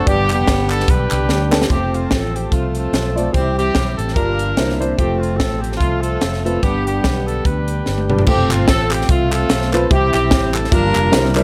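Uptempo gospel at 146 BPM in 4/4 with a swung eighth-note feel, this soulful, reverent excerpt is cut from a longer piece and moves through chords from G to F and C, touching Gm7 and C9 along the way. A clear, up-front horn section carries the melody with light vibrato and a soft attack in a jazz style, while a tonewheel organ holds sustained chords in the background through a slow rotary speaker with chorus vibrato. A grand piano with audible action noise supplies intimate accompaniment, and a fingered electric bass lays down a round, punchy, amped low end. The crisp fusion drum kit sits up front with dark cymbals, a high-tuned snare and a punchy kick, playing fills at 1.3 and 7.9 seconds that lead into new sections. Hollow, close and dry group handclaps join near the start and return from 8.5 seconds, all set in a light reverb.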